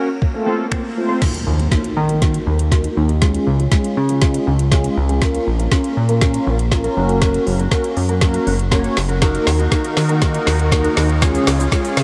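A fat, nasal analog bass with a saturated sawtooth bite arrives up front at 1.5 seconds and drives this confident, energetic dance-pop passage at 120 BPM in straight 4/4, tuned slightly flat to A4 = 436 Hz, pumping against a smooth, tape-warm electronic R&B kit of soft kick, woody snare, metallic hi-hat, finger snaps, shaker and crash cymbal that carries a drum fill through a long build-up. Underneath, a round, dark synth brass with chorus and a low-pass filter plays the accompaniment, while a clean, compressed electric guitar riff sits in the background, moving through Ebm, Db, Bbm and Gb under a filter sweep. Very quiet electronic swell, impact and riser effects mark the start and close, and an airy, evolving supersaw swell with a slow attack rises at 9.2 seconds, all in light reverb.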